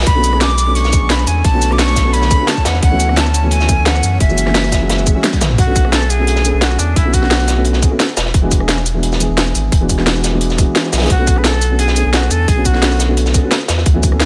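A rolling, melancholic liquid drum and bass groove at 174 BPM in B dorian drives a tight electronic kick, a layered kit with cracking snare, crisp hats, rim click, shaker and toms, and a gritty, saturated breakbeat kit with rolled-off top beneath a deep, thick sub bass placed up front, while a dark, boxy baby grand piano with dub echo moves through Bm9, Dmaj13, F#7 and E9, a shimmering, ethereal pad glimmers very quietly until 5.6 s, a drum fill and band accent mark 5.2 s, and a breathy, bright jazz flute with vibrato, chiff and tape echo carries the melody, pausing before returning at 11.1 s in this excerpt from a longer piece.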